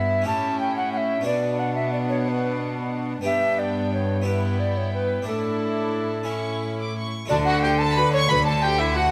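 An airy, mellow tenor recorder with a woody chiff leads this lively, festive baroque-style concerto passage in D major at 60 BPM in a lilting 6/8, over gut-string violin sections carrying a light-vibrato upper line and a rich second line, a reedy viola section, an up-front nasal cello section and a brilliant, full Italian harpsichord, with a bowed double bass section joining at 7.3 seconds as the harmony settles from A onto D, all set in a moderate recital-hall reverb in a short cut from a longer piece.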